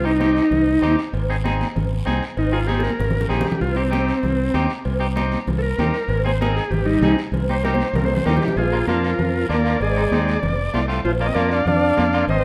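A roomy studio reverb surrounds this fiery, danceable cumbia excerpt in C minor at 194 BPM, where a reedy, heavily vibrato-laden transistor combo organ solos up front over a growly fingered electric bass, twangy picked clean electric guitar, damped high-tuned congas, a raspy guiro and distant, ringing cowbell and timbales, with drum fills at 2.7 and 7.6 seconds before a punchy trombone adds a second line in the background from 8.6 seconds as the chords shift to Bb.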